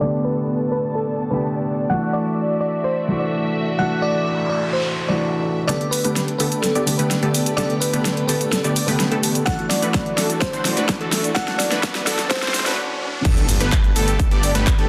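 A dense, heavily limited modern master with a moderate room reverb frames this anthemic, triumphant festival progressive house excerpt in G major at 127 BPM, cut from a longer piece. It opens on a bell-like, sparkling FM electric piano melody with chorus and delay, over an up-front concert grand piano accompaniment with audible action noise and a pumping sidechain, and a lush, woody string section sustaining Gadd9 and Dadd9 chords beneath a filter sweep and a very quiet noise sweep. At 5.7 seconds the build-up begins: an overdriven big-room drum kit with a huge snare, handclaps, hi-hat, shaker and crash plays a drum fill, while a punchy supersaw stab riff and a thick, bold unison lead playing arpeggios with vibrato sit in the background, both under filter sweeps. A punchy, overdriven electronic kick joins at 9.5 seconds, and after a brief stop the drop lands at 13.2 seconds with an impact and a menacing, beating detuned saw bass on a low G, saturated and pumping.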